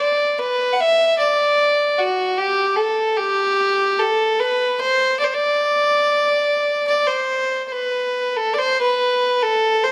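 Wistful and tender, this brief cut from a longer Celtic folk piece in D mixolydian drifts in a rubato 3/4 at around 67-76 BPM, with a single rich, earthy bowed fiddle carrying the melody alone between F#4 and F#5 with light vibrato, caught up front by close, detailed microphones in light reverb, and moving into a new section at 7.7 seconds before the 9.9-second cut.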